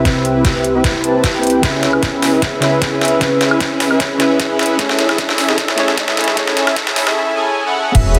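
Future bass at 152 BPM in a half-time feel, this playful, lush passage is cut from a longer piece and spends almost its whole length building up over Cmaj7, C#m7 and Amaj7 chords. An up-front, smooth, full-bodied supersaw carries the riff with a filter sweep and digital delay, while a soft, round pluck and an airy, breathy pad sit in the background with chorus and sidechain pumping. A dubstep drum kit with a deep snare, metallic hats, crash, hi-hat and woodblock plays a drum fill alongside a knocking electronic kick, and a very quiet riser and sub drop run underneath. At 7.9 seconds an impact lands and a thick, saturated sub bass on E1 arrives, followed a moment later by a nasal, detuned unison pluck arpeggio on E5. The mix is bathed in a huge ambient reverb that trails on long after each sound.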